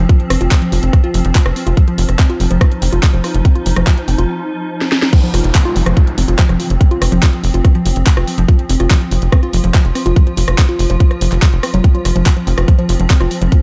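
A dark digital ambience wraps this psychedelic trance excerpt, with an up-front, overdriven kick anchoring a psychedelic, intense mood at 143 BPM in a straight 4/4, tuned slightly sharp to A4 = 441 Hz over an F5 chord. A swarming, detuned drone holds sustained chords through its own built-in reverb. Alongside it, a woody, wave-folded pluck plays a percussive riff with chorus, digital delay and a moving notch filter. A tight, punchy sequencer bass drives on a low F. Both the drone and the pluck carry sidechain pumping. A layered garage kit adds a cracking snare, handclaps, hi-hat, rim click and crash cymbal, roughened by overdrive in a small room, and a short break with a drum fill gives way to the drop at 5.1 seconds, where a faint electronic downlifter sinks in the background until 8.5 seconds.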